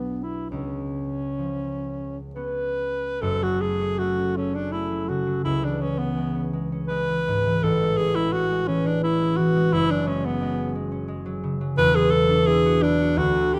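Wistful and hazy, this impressionist classical duo in F# minor drifts in a rubato 3/4 between 59 and 89 BPM, with a clear alto saxophone singing the melody with light vibrato in a classical style up front while a ringing, fingerpicked concert harp supplies warm accompaniment reaching down to E1, both set close and detailed in a wet recital hall reverb, as the harmony moves from Bm and C#7 into a passage beginning at 3.2 seconds that passes through F#m, Amaj7 and suspended chords before this cut from a longer piece ends at 13.6 seconds.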